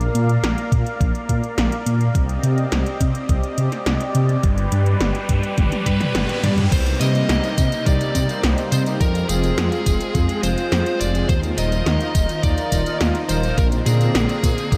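A steady, straight 4/4 pulse at 105 BPM drives this moody, cinematic synthwave piece in C minor, cut from a longer track, with 80s electronic pad drums carrying crash cymbal, metallic hi-hat, tambourine and a gated snare and toms from the start, while a thumpy, sampler-style electronic kick joins at 0.7 seconds. Underneath, a dark, detuned saw bass rumbles deep and up front, and a smooth analog pad holds sustained chords with chorus, a moving notch and sidechain pumping. A background riser builds from 3.5 seconds as a drum fill and a band accent lead into the second section at 6.7 seconds, where the harmony shifts toward Cm7, Fm and Ebsus2. A distorted, compressed fuzz lead guitar carries the melody from 5.9 seconds through an analog delay, and fat, nasal synth brass stabs with vibrato and a filter sweep sit in the background from 7.0 seconds, washed in chorus and a diffuse ambient delay. 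The whole mix is dreamy and soaked in a huge ambient reverb, giving the tape-warm drums and warm synths a hazy, expansive feel.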